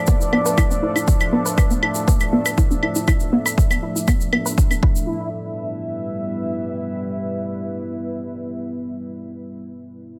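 A punchy, tape-warm electronic kick drives a straight 4/4 pulse at 120 BPM, joined by layered claves and a grainy, bright egg shaker in this cinematic, melancholic melodic techno excerpt in E phrygian. Over the beat, a tight, detuned sawtooth synth runs driving arpeggios with a filtered pluck, its mellow tone colored by chorus, phaser, digital delay and sidechain pumping. Beneath it, a deep, dark ambient pad holds slow-attack sustained chords up front, thickened by unison, a sub octave, chorus, its own reverb and the same pumping. The harmony moves from Dm/F to Em at 4.8 seconds, and the percussion falls away around that point, with the arpeggio ending at 5.3 seconds. From there the moody pad carries on by itself until 9.0 seconds, its long release lingering in a light reverb.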